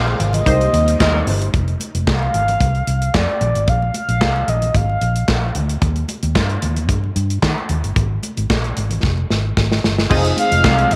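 A dark, round, foam-muted fingered bass sits up front through this slick, funky early-eighties boogie funk excerpt in F dorian at 112 BPM, joined by a punchy modern drum kit with handclaps, bright cymbals and a medium-tuned snare, plus very quiet, high-tuned congas. A mellow, horn-like sawtooth synth lead with chorus, vibrato and slapback echo carries the melody. A tight horn section with octave doubling drops out at about 1.3 seconds, while a nasal, detuned polysynth comp and a swirling, phased string machine fill out the opening before dropping away at about 1.5 seconds. After a drum fill from 9.0 seconds, the comp and strings return at 10.1 seconds on an Fm7 chord, all set in light reverb and small room ambience.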